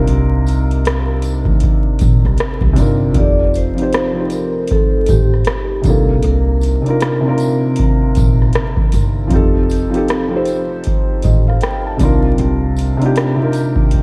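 Nostalgic and melancholic, this lo-fi hip hop fragment at 78 BPM in C dorian swings over Cm11 and F9 as a felt-muted upright piano with cassette-tape color and audible action noise sits up front beside a booming analog drum machine's deep kick, metallic hats and rim click, while a woody pizzicato upright bass and a faint jingly tambourine in the background fill out the groove, and a soft-mallet vibraphone carries the ringing melody with slow motor vibrato and delay from 3.2 to 8.9 seconds, all beneath vinyl crackle and light studio reverb.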